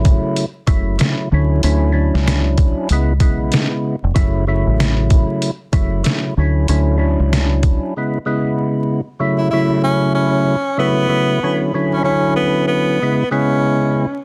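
A swung sixteenth-note groove in four drives this gritty, tough boom-bap hip-hop fragment, cut from a longer piece. Up front, a sampler-style drum kit with a vintage 12-bit grit gives a thumpy kick, a medium-tuned snare and hi-hat a compressed, pitched-down sound, while a dark, round, foam-muted fingered electric bass holds the low end. A fat, percussive tonewheel organ carries the minor-seventh and major-ninth chords throughout, lightly overdriven and turning through a slow rotary speaker with vibrato. Drums and bass drop out at 7.8 seconds for a short break, leaving the organ alone until a breathy tenor saxophone enters at 9.4 seconds. The sax plays a mellow, intimate jazz-style solo with a soft attack, scooped notes and a whispered vibrato, trailed by digital delay. Light reverb, vinyl crackle and a dense, heavily limited modern master frame the whole sound.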